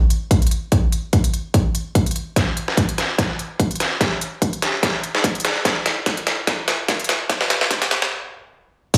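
An overdriven electronic kick drum sits up front, punchy and layered, entering at 0.3 seconds beneath a dubstep drum kit of crash cymbal, crisp hi-hats and a deep snare with a tape-warm, filtered edge. This is a lush, dreamy passage of future bass in a half-time feel with a light swing on the sixteenths, cut from a longer piece. The whole passage is a build-up with a filter sweep running across it, and a drum fill carries the tension from 2.4 seconds onward. At 8.1 seconds the drums halt abruptly, leaving a short gap before the cut. A moderate digital room reverb lends the produced, electronic kit an airy ambience.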